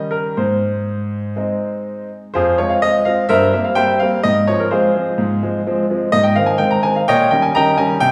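A bright grand piano plays alone throughout this dramatic, elegant classical-period sonatina, its brilliant, open tone and long sustain sitting up front in a wet recital hall whose reverb places the listener further back in the room. The phrasing breathes with rubato and uneven beats in a 4/4 metre. A brief opening phrase gives way at 2.4 seconds to a new passage moving through F minor, C7 over G, Ab and Eb7 over Bb before this cut from a longer piece ends at 8.1 seconds.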